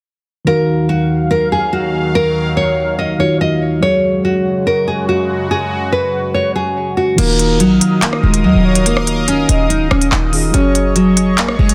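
Menacing and cold, this drill-style hip hop clip sits at 143 BPM in a half-time feel, centred on Eb minor and moving between Ebmadd9 and Gbsus2. A dark, fingerpicked nylon-string guitar carries the melody up front from the start, its notes trailing into delay, while a mellow, clean tine electric piano fills in the accompaniment beneath it. A detuned sawtooth pad holds sustained chords across a broad range, bright and evolving with a slow attack, a filter swell and a shimmer of chorus. At 7.2 seconds the beat arrives: a crisp electronic drill kit of hi-hats, handclaps, rim clicks and crash cymbal, roughened by vintage 12-bit sampler grit, over a punchy, tight 808-style bass with a fast attack and decaying tail. In the background, a soft, breathy flute-like synth lead adds a second line with vibrato, tremolo, chorus and delay until 10.9 seconds. The mix has light reverb and a dense, heavily limited modern master, and the clip is cut from a longer piece.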